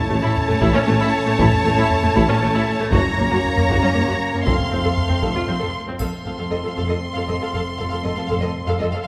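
A wet, hall-like reverb surrounds this triumphant, majestic stretch of epic orchestral film score in 3/4 at 117 BPM, cut from a longer piece and moving through A, Gb and F. Lush, vibrato-rich violins carry a focused high melody over a second violin line, while distant, smooth violas and close cellos fill the middle and low strings, joined by very quiet double basses and a mellow, soft-attack tuba that drops out at 5.5 seconds. Dark, tight French horns hold sustained chords, heavy-stick taiko drums sound close and dry until 7.0 seconds, and a bright triangle appears in the background at 6.0 seconds.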